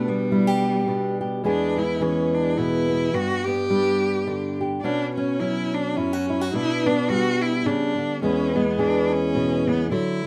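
A clear, focused bowed cello with vibrato takes the solo from the start over a dark, fingerpicked steel-string acoustic guitar with audible finger squeak in this gentle, hopeful acoustic folk piece at 106 BPM in a lightly swung 3/4. Both sit up front, with the cello close, in light reverb as the chords move through G/B, E, G and Bsus2 across its 10.3 seconds.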